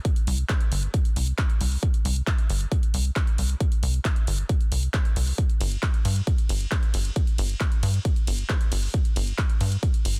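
A dense, heavily limited modern master with digital ambience frames this short cut from a longer uplifting trance piece, moving at 135 BPM in a straight 4/4 with an emotional, euphoric mood. An up-front electronic kick drum, layered and re-recorded in a small room, starts at 0.0 seconds and drives the pulse. Just behind it, an analog drum machine with a tape-warm character supplies handclaps, hi-hat and ride cymbal, its hats and cymbals pumping against the sidechain. From 0.3 seconds a tight sequencer bass enters, ranging from G1 to G2, also up front. The bass blends sawtooth, square and sine waves with wave-folding, a filter pluck with a fast attack and decay, a moving notch and saturation, and it pumps with the sidechain to give the groove a driving, punchy push.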